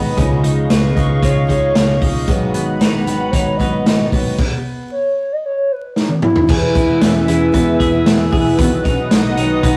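Youthful and bright, this short section of jangly indie pop moves at 114 BPM in a straight 4/4. A full-bodied, shimmering twelve-string acoustic guitar and a twangy, clean twelve-string electric guitar playing arpeggios ring together from the start, underpinned by a dark, round, foam-muted electric bass and an airy, flute-like pad with chorus holding sustained chords. The vintage drum kit arrives at 0.2 seconds, up front with a punchy kick and a rolled-off top, and a hollow, woody clarinet-like synth lead with vibrato and chorus carries the melody from 0.7 seconds. Chords move from C#add9 to G#m7, reach a stretch at 4.4 seconds where a clear chord is absent, then a drum fill leads into a new section at 6.5 seconds on E and B, where a very quiet vibraphone with soft mallets and slow motor vibrato adds a second line. The rough rehearsal-room sound sits in a stone room reverb, with saturation and vinyl crackle giving it a worn, homemade charm.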